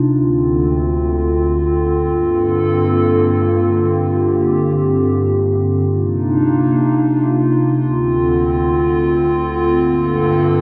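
A warbling, detuned tape-like pad plays alone from 0.0 s to 10.6 s, its slow attacks and long, sustained tones drifting in free time through Dm7, Gm11 and Cm11 chords in G minor, coloured by chorus and its own reverb. This spacious, ethereal hip hop fragment sits the nostalgic lo-fi pad up front within a huge ambient reverb and a dark production. A second phrase begins at 5.9 s.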